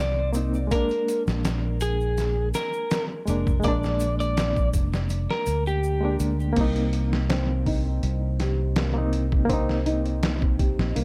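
A slightly broken-up electric slide guitar carries the melody with tape echo over a barky, reedy electric piano, overdriven with fast tremolo and sampler grit, while a round, dark fingered bass sits up front in this hypnotic, melancholic trip hop excerpt at 82 BPM in C minor. From 0.3 seconds a pitched-down, compressed sampler-style drum kit with a thumpy kick and crash, hi-hat and snare joins, along with a tube shaker kept in the background. At 6.6 seconds the guitar has stopped and a felt-muted upright piano enters with soft, intimate arpeggios through tape echo, all under light reverb as the chords move from Cm7 to Bb7 and back.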